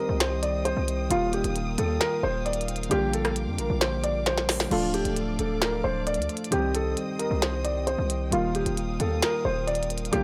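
A half-time trap groove at 133 BPM drives this dark, eerie hip hop excerpt, with a glitchy, overdriven drum kit of clicky hats, a tiny snare, rim clicks and crash up front, plus a drum fill at 4.3 seconds, over a heavy, aggressive distorted 808-style bass. A felt-muted upright piano carries the intimate melody through tape echo, while warbly lo-fi synth keys with chorus add nostalgic, detuned accompaniment and a muted string section quietly holds veiled, con sordino chords in the background. The chords move from Cm through Ebadd9, Bb6 and Dm, all captured as a dry, gritty hardware recording with transformer saturation.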